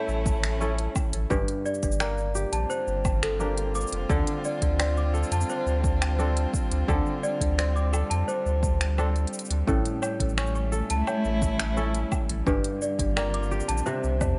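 Delicate and intimate, this folktronica excerpt moves at 86 BPM in D minor, cut from a longer piece. A fingerpicked kora sets out ringing, crisp arpeggios touched with digital delay, while a dark string quartet holds sustained chords with expressive vibrato and portamento, one player to a line and recorded close. Above them a worn celesta carries a bell-like second line, sweet but slightly out of tune, its boxy small-room tone roughened by vintage 12-bit sampler grit and trailed by delay. Underneath, a round sine sub bass sits up front, while an overdriven electronic kick and an organic electronic kit of cabasa, finger snaps, smooth hi-hat and woodblock enter just after the start. The harmony drifts through A7, Gm7 and Dm7 before closing on Cadd9 at 13.9 seconds, all wrapped in light studio reverb with a soft, rolled-off top end.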